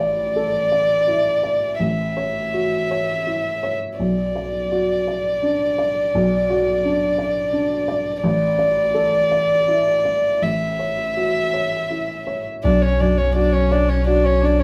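Melancholic and fragile, this rubato neoclassical passage in 6/8 sets an intimate, sul tasto solo violin melody over a worn, woody, slightly detuned upright piano in a moderately reverberant room, until at 12.6 s a floating, airy-bowed viola and a deep sine sub bass with a punchy pitch-drop attack join for the final Bmadd9 chord.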